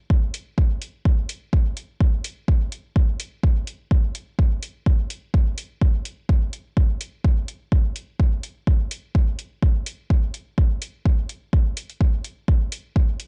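Techno with a deep, cavernous mood, cut from a longer piece and built on a 4/4 pulse with a light swing on the sixteenths. An electronic kick drum carries the track, a layered, overdriven deep kick re-recorded in a large room and sitting up front in the mix. It starts at 0.1 seconds, and an analog electronic hi-hat follows at 0.3 seconds, its metallic tone also placed up front but at a much lower level than the kick. The pair run together throughout, with the kick ending at 13.1 seconds and the hi-hat at 13.3 seconds. The sound is dry and gritty, with little reverb and the dulled top end of a cassette tape hardware recording.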